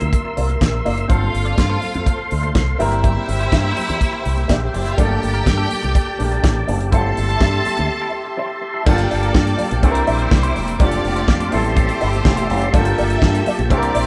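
A live-in-one-room sound with a small room's moderate reverb frames this sultry, danceable disco cut at 124 BPM in G dorian, where a damped 70s drum kit with a fat snare and tight kick sits up front beside a punchy fingered electric bass with an envelope filter, while a clean electric guitar with wah stays in the background, a clear concert grand piano adds open-sounding accompaniment, a tonewheel organ holds sustained chords through chorus vibrato and a slow rotary speaker, distant high-tuned congas sit in the background, and a lush bowed string section enters at 1.1 s as a second line before a break at 7.9 s leads into a new section at 8.9 s.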